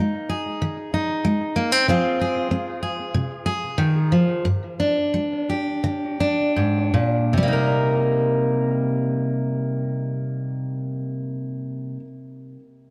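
A lone fingerpicked steel-string dreadnought acoustic guitar, warm and up front with a touch of analog delay, opens this stirring, wistful folk fragment in C minor and 4/4 at 76-96 BPM, moving through Ab5, Fm and G5 as it slows down from 1.9 to 7.3 seconds before settling on Cm7, set in light reverb within a dark production.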